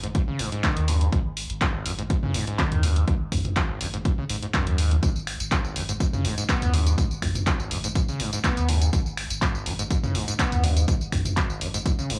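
A lightly swung 16th-note groove in 4/4 drives this hypnotic, raw acid house excerpt, anchored by an overdriven electronic kick that starts at 0.1 seconds and runs to 12.0 seconds. Around it, a punchy analog drum machine, re-recorded in a small room and placed up front, adds finger snaps, handclaps, hi-hat, tambourine and toms. The riff comes from a squelchy, resonant sawtooth acid bass with a fast, decaying filter pluck, pushed through distortion, tube saturation, lush chorus, vintage 12-bit sampler grit, analog delay and sidechain pumping. Beneath it, a round sine sub bass holds deep sustained tones that pump with the sidechain. The mix is dry and gritty, with the small-room ambience of a hardware recording, and it plays as one continuous section cut from a longer piece.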